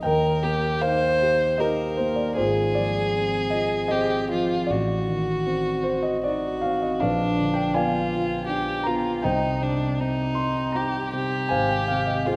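A bowed violin and a dark concert grand piano begin together, opening a serene, romantic classical duo in Eb major that moves at 78 BPM in 3/4 with a rubato feel. The single violin carries the melody in a middle register, its tone focused and smooth at the top, with a vibrato that gives it a warm glow. The piano supplies the accompaniment across a broad range, mellow in character and anchored by a deep bass. Both instruments sit up front, bathed in the wet reverb of a concert hall. The harmony drifts from Eb through Fm over Ab, a diminished chord and a Bb7b9 before resting on Cm and returning to Fm over Ab at 11.5 seconds, as this short passage from a longer piece closes at 12.4 seconds.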